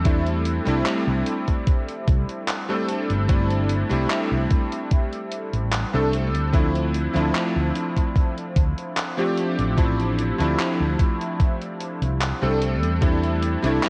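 Woozy and hazy, this short vaporwave excerpt drifts at 74 BPM in a straight 4/4, with a bright, clangy electric grand piano up front carrying the chords from C69 to Dm9 and back at 12.6 seconds, its long sustain smeared by analog chorus and delay. Beneath it, a dark, round fretless electric bass keeps a punchy low line, while a thumpy, tape-warm electronic kick sits forward and a gated 80s drum machine adds handclaps and hi-hat in a small-room sheen. The whole mix carries the light reverb and worn grain of cassette tape.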